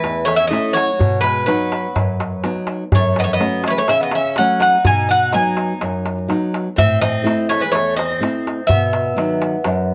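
A dark, warm production in a small, reverberant room carries this joyful, energetic Greek folk bouzouki band at 125 BPM in a straight 4/4, where a bright, metallic lead bouzouki with plate reverb sings the melody up front over a second, warm bouzouki line, a small fingerpicked nylon-string guitar accompaniment and a crisp, deep metal-shell darbuka, as the chords move through A, B, F#m, B and Am before returning to B in this short excerpt cut from a longer piece.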